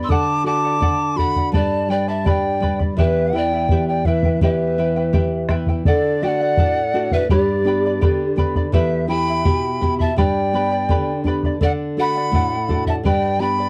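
Andean folk at 83 BPM in a festive yet wistful mood, this short excerpt sets a breathy, reedy quena melody over a mellow, airy pan flute second line, with a shimmering fingerpicked charango, a full-bodied nylon-string guitar up front and a round, vintage bombo, all captured in a dry, close 1970s-style studio with light reverb as the chords move through D, G and Em.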